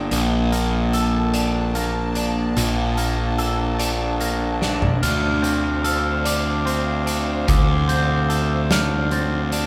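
A slow 6/8 pulse at 49 BPM, counted in dotted quarters, carries this cinematic, melancholic post-rock fragment, cut from a longer piece. A twelve-string electric guitar picks clean, compressed arpeggios from the outset, and a fuzz-laden electric bass sits up front with warm overdrive beneath it. An oversized, low-tuned drum kit enters at 0.1 seconds, its boomy kick, medium-tuned snare, toms, hi-hat and dark crash cymbals saturated and pumping in a big room. Behind them, a lush studio string section bowed with vibrato holds sustained chords, moving from Bbmaj7 to Dm7 at 5.0 seconds. A short drum fill leads into that change, where a glockenspiel played with rubber mallets joins with mellow, bell-like arpeggios high above. The whole is bathed in a moderate recital hall reverb, giving it the spacious air of a church or concert hall.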